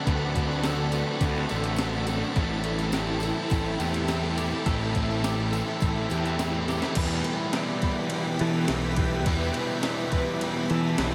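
A straight 4/4 pulse at 104 BPM drives this dreamy, hazy excerpt of shoegaze and dream pop in E minor, where a thumpy gated 80s drum machine with gated reverb snare and a fuzzed, up-front picked bass anchor two crunchy overdriven guitar riffs, one with ensemble chorus and one with reverse reverb, while a clean twelve-string electric guitar arpeggiates through subtle chorus and analog delay, a pure, detuned organ-like pad sustains D7 and Am7 chords before a drum fill at 6.7 seconds leads into Em7 at 7.0 seconds, and a very quiet jingly tambourine drifts through a mix soaked in huge ambient reverb.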